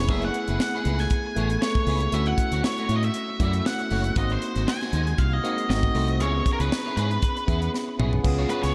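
Polished 1980s jazz-funk pop in F# minor at 118 BPM with a light sixteenth-note swing, this urban, bittersweet excerpt sets a dark, fuzzy octave-fuzz lead guitar melody with tape echo over a barky, lightly overdriven tine electric piano, a slightly broken-up background guitar riff with ensemble chorus, an up-front fingered electric bass and a tight, dry funk drum kit with a high-tuned snare, moving through chords from F#m11 and Dmaj9 to G#7b9 and C#m7, with a drum fill at 7.7 seconds, a brief touch of very quiet ringing congas at 8.5 seconds, and a dreamy mix soaked in lush hall reverb.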